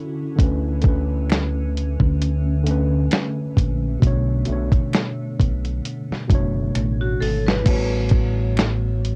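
Entering at 0.4 s with a dark, round fingered electric bass, a gritty, compressed sampler-style drum kit with a thumpy kick and cassette-tape grain leads this melancholic, reflective lo-fi hip hop excerpt over a worn, slightly out-of-tune tine electric piano and a blurred granular pad drifting in the background, with faint finger snaps and a brief, ringing hard-mallet vibraphone line through analog delay from 7.0 s.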